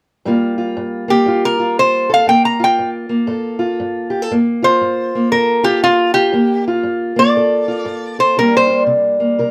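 A fingerpicked steel-string parlour guitar opens at 0.3 seconds, its old strings giving a dark, woody, boxy accompaniment in a swung 4/4 acoustic country blues. At 1.1 seconds a lap resonator guitar enters with the melody, played with slide and fingerpicks, its metallic, nasal voice sitting slightly above the accompaniment. Both instruments are up front, captured by close, detailed microphones with a light touch of reverb. The harmony rests on Gm9 before shifting to C7sus2 near the end, lending the mood a mournful, smoky cast. The resonator falls away at 8.8 seconds while the acoustic guitar carries on briefly in this short cut from a longer piece.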